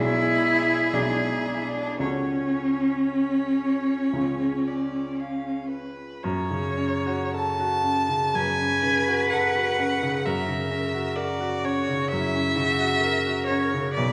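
Heard in a reverberant recital hall, this melancholic, elegiac excerpt from a slow romantic piano-trio movement in F# minor moves with rubato at 51-68 BPM, a rich, smooth-topped solo violin singing the melody up front while a distant, even cello carries the second line, both bowed with vibrato, over the open tone of a baby grand piano accompaniment, passing into a new section at 6.2 seconds.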